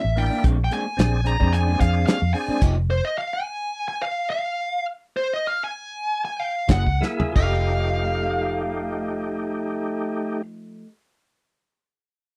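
Straight-eighth soul blues with a soulful, rollicking mood, this short cut features a bright, overdriven lead guitar singing up front, while a lo-fi, slightly broken-up rhythm guitar with analog chorus hits stabs. Beneath them, a dark, round, foam-muted bass anchors the low end and a thick tonewheel organ with key click and fast rotary speaker fills in chords, all in a dry mix. A tight, gritty soul drum kit with dark cymbals and a pumping room sound drives the opening until the band stops at 2.6 seconds and the pace slows, leaving the lead guitar alone; the organ re-enters at 6.4 seconds, and the rest of the band returns at 6.7 seconds with a brief drum fill before settling on a ninth chord.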